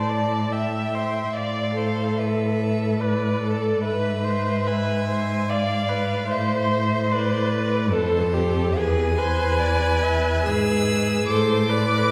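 An up-front, expressive cello carries the low bass with soft attacks, vibrato and sliding portamento, anchoring this elegiac, solemn slow movement for string quartet in 3/4 with free, rubato timing. Above it, a rich first violin sings the smooth, even melody while a distant second violin traces a second line and a clear, focused viola fills in the accompaniment, all four bowed with vibrato throughout the 12.1 seconds. A wet concert hall reverb places the listener further back in the room, lending this fragment of a longer piece a spacious, mournful glow.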